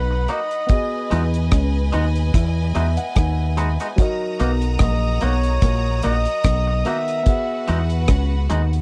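Lovers rock reggae at 73 BPM with swung sixteenths, this short, romantic and smooth cut from a longer piece moves between Bmaj7 and Emaj9. A soft-attack flugelhorn carries the jazz-style melody with scooped notes, light vibrato and tape echo, over a lush bowed violin section, an intimate grand piano with audible action noise that plays a fill from 2.3 to 4.0 seconds, a picked guitar riff in the background through chorus and slapback echo, and compressed, twangy fingered guitar stabs. Underneath, a dark, round dub bass and a dry reggae kit of tight kick, hi-hat and rim click sit up front in a close 1970s-style studio sound.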